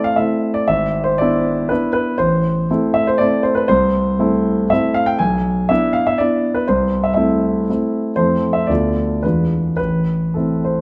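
Nostalgic and capricious, this short excerpt from a longer classical piece is a romantic triple-time dance in A minor, its dotted rhythms pulled about with rubato as the tempo moves between 98 and 129 BPM. A concert grand piano plays alone and up front, its tone deep in the bass with a short sustain, reaching from G#1 to G#5. Close, detailed microphones capture it within a moderate recital hall reverb, and the harmony turns through Fmaj7 and E7b9 before settling back on A minor at 9.8 seconds.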